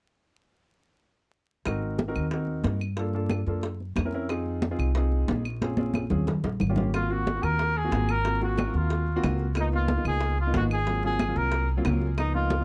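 A brisk 182 BPM Afro-Cuban jazz groove in straight 4/4 opens at 1.7 seconds, with ringing, high-tuned congas, tight, compressed bongos and woody claves setting a sunny, danceable feel over a thumpy, gut-strung pizzicato upright bass and a natural-sounding grand piano accompanying through Ab mixolydian changes. A drum fill from 5.6 seconds leads into the second section, where a mellow, roomy trumpet takes the jazz solo at 6.9 seconds over Ab13 and Db13 chords. Light reverb and a layer of vinyl crackle colour this passage, cut from a longer piece.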